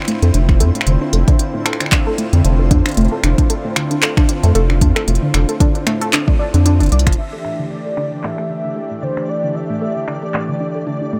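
Glitchy and intricate, this IDM excerpt moves at 114 BPM in D minor with a light swing, as a mellow analog pad holds sustained chords beneath a warbling, lo-fi pluck whose arpeggios carry 12-bit sampler grit, delay and filter sweeps, while a grainy, flickering granular texture hovers in the background. A tape-toned organic electronic drum kit of finger snaps, handclaps and smooth filtered hats runs throughout, joined up front by a deep electronic kick and a rubbery, hollow square bass with tube saturation until 7.2 seconds; a drum fill at 6.9 seconds and a band accent just after lead the harmony from Dm9/F to A7sus4 at 7.2 seconds. From there a velvety synth lead with vibrato, chorus and delay carries the melody in a dry, close-sounding mix.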